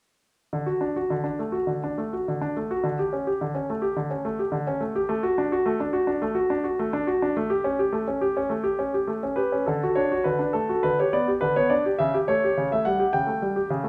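A bright concert grand piano opens at 0.5 s, playing alone in a graceful, playful classical-period sonatina in D major, at 105 BPM in 4/4 with a gently rubato feel. Its brilliant, polished tone sits up front with deep bass, ranging from C#3 to G5 over harmony that moves from D through A7 and G/D before arriving on A7/C# at 12.0 s and closing there at 13.9 s. A moderate recital hall reverb surrounds this short passage, which is cut from a longer piece and shifts into a new section at 9.7 s.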